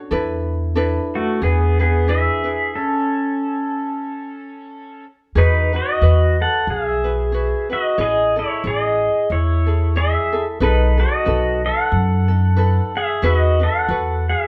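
Pedal steel guitar leads this languid, relaxed Hawaiian excerpt at 92 BPM with a gentle swing, its bright, twangy electric slide lines picked with fingerpicks and shaped by volume swells up front, over a light fingerpicked ukulele and a woody pizzicato upright bass, all in a moderate studio room, with a stop from 2.7 to 5.4 s before settling into E major on lush Emaj9, Amaj7 and B6 chords.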